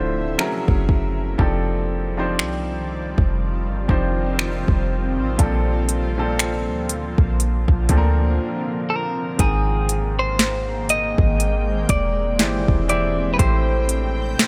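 A slow 60 BPM groove in 4/4 with swung 16ths drives this longing, sensual contemporary R&B excerpt. An overdriven electronic kit of soft kick, sharp snare, crisp hi-hats and finger snaps enters at 0.4 s over a deep, boomy sine 808 bass and a warm grand piano moving through lush chords like F#9, Bbmaj7 and E7alt. A blurred, evolving granular pad with its own reverb hangs behind them, and after a break at 8.4 s a clean, picked, compressed electric guitar takes the melody from 8.9 s, all in an otherwise dry, close mix.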